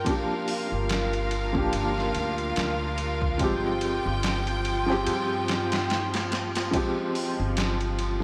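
Trip hop at 72 BPM with a 16th-note swing, this brooding, cinematic excerpt moves from Gm7 to Fmadd9/G over its 8.2 seconds. A felt-muted upright piano, soft and intimate with audible action noise, carries the accompaniment through tremolo and tape echo, while a rich studio string section holds smooth, bowed chords with vibrato, and a woody pizzicato upright bass sits up front. A gritty, pitched-down sampler-style kit enters at 0.1 s with a thumpy kick, snare, hi-hat and ride, and the whole dreamy mix is soaked in cathedral reverb.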